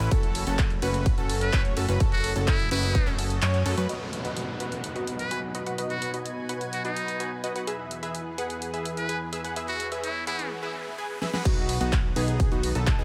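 Lightly reverberant, this euphoric 127 BPM festival progressive house clip opens on an uplifting drop over F#m: a punchy, up-front electronic kick, a big-room kit with a huge snare, handclaps, hi-hat and cymbals, a fat, tube-saturated analog bass, a detuned supersaw stab riff, bright sawtooth lead arpeggios and a lush, chorused pad, all four synths pumping with sidechain. A buzzy, close-miked muted trumpet melody with scooped notes enters at 1.4 s, and from 3.9 s a filter sweep moves across the supersaw while a background downlifter and riser play through B and E, until the drop returns at 11.5 s.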